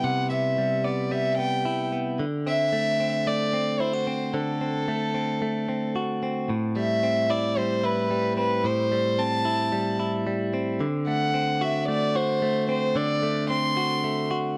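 Restless and bittersweet, this indie pop fragment from a longer piece sets a floating, soft-edged bowed violin melody touched with tape echo over bright, twangy clean electric guitar arpeggios, both up front in a dry, close 1970s-style studio sound with light reverb, as the harmony moves from Cmaj7 and D7 to Am7 at 6.5 seconds.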